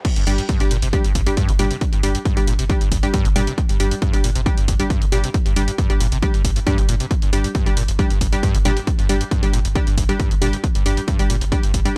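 A heavy, overdriven electronic kick sits up front from the first beat of this driving peak-time techno drop, joined by a tape-warm analog drum machine's high-passed hi-hats and crash cymbal and a squelchy, resonant sawtooth acid riff with a filter sweep, chorus, delay and sidechain pumping, set back in the mix. A deep, thick triangle sub bass holds G1 underneath with low-pass filtering and pumping, while crisp, detuned wavetable chord stabs with a filter pluck and delay arrive at 0.3 seconds. At 136 BPM in G minor over a G5 chord, the intense, industrial cut has a dry, gritty hardware character in a digital ambience.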